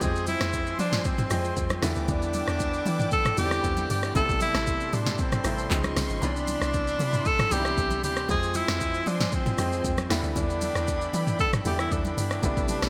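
A breathy, whispered tenor saxophone carries the melody up front with scooped notes and digital delay, over a relaxed, warm amapiano groove at 116 BPM in 4/4 that moves through Fm, Em7, Am9, Dbmaj9 and Cmaj9. A clear grand piano with audible action noise plays accompaniment, while a soft-bowed studio string section sustains chords in the background with sidechain pumping, and a round, dark log drum bass supplies percussive low notes. A punchy deep house drum kit with gated reverb drives the beat with handclaps, hi-hat, rim click, shaker, snare and toms, its deep kick dropping out from 6.2 to 6.7 seconds, as very quiet, damped congas add thin-skinned accents in a bright 1980s-style digital production.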